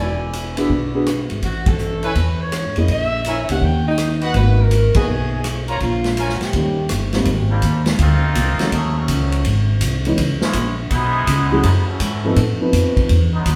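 Heard from further back in a large studio with a wet reverb, this excerpt of brassy big band swing moves at 165 BPM in G# minor with a swing feel. A bright, vibrato-laden saxophone section carries the melody over mellow trumpet section stabs, a woody pizzicato upright bass sitting up front, a warm concert grand piano and a swinging drum kit with a punchy kick, rim clicks and ride cymbal, with band accents at 1.6 and 4.9 seconds. After the saxophones and trumpets drop out, a nasal trombone section in straight mutes takes a solo from 7.3 seconds over rich chords such as G#maj9#11 and C#m9.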